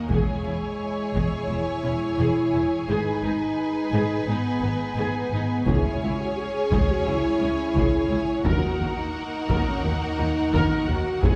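Set in a straight 4/4 at 86 BPM, this epic orchestral film-score passage in C# dorian moves with a dramatic, weighty stride, cut from a longer piece and lasting about 11 seconds. A taiko ensemble struck with heavy sticks sounds distant in a large room, playing from 0.1 to 1.5 seconds and returning at 5.7 seconds. Up front, a dark, roomy French horn section holds sustained chords through a progression of C#m/E, G#m, C#m and D#m. A symphonic violin section carries the melody with a warm, focused vibrato, joined by a distant studio violin section on a second line. Beneath them, lush bowed strings in the background supply sustained chords and viola accompaniment, while cellos and double basses anchor the bass, the basses adding an expressive portamento. A wet scoring-stage reverb places the ensemble further back in the room, giving the whole cue a grand, cinematic breadth.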